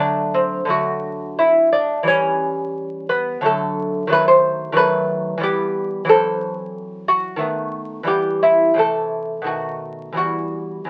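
A solo lute with gut double strings and some octave-doubled courses, fingerpicked and delicate, sits up front in this radiant, dance-like baroque-style excerpt in a rubato triple metre, moving from a D major opening into E minor around 4.1 s, all heard through light reverb and the crackle of a very old 78 rpm record.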